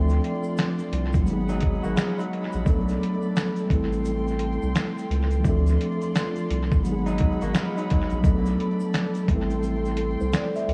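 A gritty, overdriven sampler-style drum kit anchors this melancholic, reflective lo-fi hip hop fragment, cut from a longer piece, with a thumpy kick, fat snare, hi-hat, finger snaps and shaker swung on the sixteenths, coated in 12-bit crunch and dub echo. Up front beside it, a round, deep analog bass holds the low end with a fast attack and long sustain. A mellow, clean tine electric piano carries the accompaniment through a low-pass filter and its own echo, while a dark studio string section, bowed sul tasto with light vibrato and a soft attack, sustains chords behind it. A slightly broken-up electric guitar through a small old amp adds brief picked second-line phrases at about 1.5 s and again at 7.1 s, and a grainy tube shaker sits in the background. The harmony cycles twice through Dm7, G#m7, Bm7 and Am7, all wrapped in an echo-heavy cassette-tape mix with light digital reverb.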